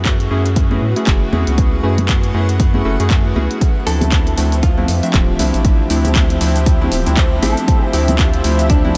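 Hypnotic and late-night, this deep house excerpt moves at 118 BPM in 4/4 with a 58% swing on the sixteenths, its chords shifting from F#m9 to Dm9 at 3.6 seconds. An overdriven, layered electronic kick sits up front, joined by a punchy analog drum machine playing cabasa, handclaps and hi-hat with its own overdrive, while very quiet congas with hard hands add a bright acoustic touch from 0.7 seconds. A round, deep analog bass with a nasal edge and fast attack pumps with sidechain compression, and detuned, wave-folded analog keys play decaying stabs through chorus, a low-pass filter sweep and tape echo. Behind them, a granular cloud pad drifts in a blurred, evolving haze with its built-in reverb and sidechain pumping. Around 4 seconds a warbling, vintage analog pad with slow-attack sustained chords and 12-bit sampler grit arrives, alongside a dark, clean hollow-body jazz guitar melody in the background, softened by subtle chorus and a diffuse ambient delay, all sitting in light reverb.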